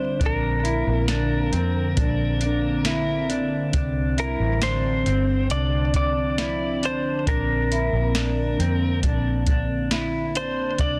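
A clean lap steel guitar carries the melody in this dreamy, blissful dream pop excerpt, its dark, compressed slide tone trailed by delay. Beneath it, a warbling tape-like pad holds sustained chords with a detuned, nostalgic lo-fi haze, while a mellow electric guitar plays arpeggios soaked in lush chorus and delay. A foam-muted fingered electric bass sits up front with a round, punchy sound, joined from 0.2 seconds by a soft vintage rhythm box with a deep kick, crisp snare and metallic hats. At 68 BPM in straight 4/4, the harmony drifts from Bbadd9 to Csus2 and back. Light reverb and digital ambience frame a dense, heavily limited modern master.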